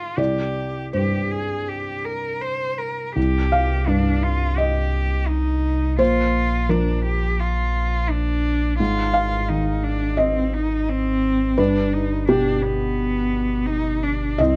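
Rubato phrasing in 4/4 carries this reflective, fragile neoclassical excerpt, where a soft, mellow, felt-muted upright piano with audible action noise and short sustain accompanies a rich, focused solo cello bowed with vibrato as a second line, joined at 3.2 s by a deep, clean sine sub bass under a Cm, Bb, Ab, G progression, with the piano, cello and bass each placed up front in a dry, close sound.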